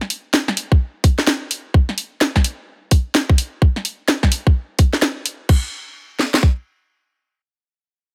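Soulful and skippy, this short cut of two-step UK garage moves at 128 BPM in 4/4, with a 62% swing on the sixteenths giving the groove its lilt. It is built entirely from two layered, electronic garage drum kits that sit up front in a dry sound. The first kit opens at 0.0 seconds with crash cymbal, hi-hat and a cracking snare, alongside a tight kick, and it runs until 5.6 seconds. The second kit joins at 0.7 seconds, stacking a louder kick and another snare with plenty of crack, and carries on to 6.6 seconds. Around 5.5 seconds the arrangement shifts into a new section, where the second kit's kick and snare take over as the first kit drops out.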